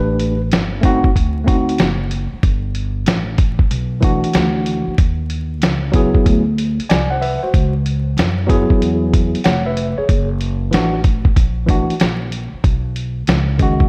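Relaxed and smooth, this jazz-hop excerpt sits at 94 BPM with a swung sixteenth-note feel, moving through jazzy chords such as Am7, D7b9 and C#m11 under a dark production with light reverb and vinyl crackle. A worn, slightly out-of-tune tine electric piano, lightly overdriven through its built-in speakers, carries the accompaniment and plays a short fill from 6.6 to 7.5 seconds, while an up-front pizzicato upright bass with gut strings gives a woody, thumpy low end. From 0.2 seconds, a compressed, muffled lo-fi sampler-style drum kit re-recorded in a large room joins with hi-hat, a medium-tuned snare and a thumpy kick.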